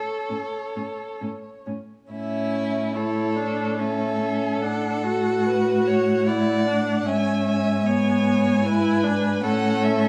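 In a moderately reverberant stone room, this elegiac, yearning fragment of a slow romantic string quartet movement in A major unfolds in a rubato 3/4 at about 74 BPM: a warm first violin sings an expressive melody with vibrato and portamento over a rich, distant second violin line, while a dark, woody viola accompaniment and a smooth, up-front cello bass enter at 0.3 seconds, and the harmony moves from A through Bm7/A and E7/G# back to A.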